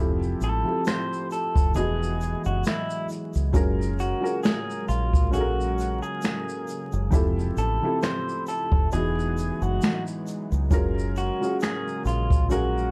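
Up front, a jazz brush drum kit with a boomy kick, a medium-tuned snare, hi-hat, shaker and finger snaps sets a lazy, swung 67 BPM groove in this cosy, dreamy lo-fi hip hop excerpt, alongside a dark, round, foam-muted fingered bass and a soft felt-muted upright piano whose action noise sits close and intimate. An electric guitar through a small old amp carries the slightly broken-up, compressed melody from 0.4 seconds, while a warbling, detuned tape-like pad with chorus and reverb hangs in the background alongside a grainy egg shaker. The chords drift between Fmaj9, Emaj9 and F#maj9 over light reverb and vinyl crackle.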